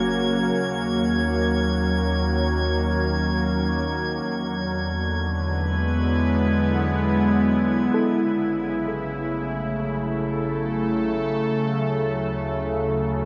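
An evolving, detuned wavetable pad sits up front with a warbling, vintage character, holding sustained chords through a filter sweep in the first 8.0 seconds of this luminous, serene ambient fragment in free time. A deep sub bass and a nasal, organ-like drone in the background hold it up, while a glassy texture of drifting overtones hovers high above until 8.0 seconds. From 7.9 seconds a soft, round, very quiet pluck plays arpeggios until 11.2 seconds, and from 8.0 seconds the sub bass fades in, all within a huge, wet reverb as the chords move from F# and D#m through E7 to A6 and Dmaj7.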